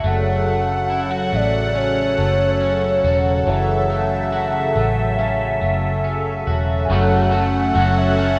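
A swirling, detuned analog pad and a warbling, nostalgic lead open this haunting, ethereal dream pop excerpt, the pad sitting up front with phaser and chorus while the lead's vintage tone wavers through chorus, tremolo, vibrato and digital delay. Beneath them, a round, punchy muted bass plays dark and amped, close to the listener, as a bright, twangy electric guitar at the edge of break-up picks arpeggios through analog chorus and delay. The harmony rests on F#m7 before settling onto F#m at 6.9 seconds, when a second slightly broken-up guitar enters in the background with tremolo and ensemble chorus to add accompaniment. A moderate, lush hall reverb softens the slow, straight pulse, and the rough home demo mix gives the whole fragment a hazy, unpolished intimacy.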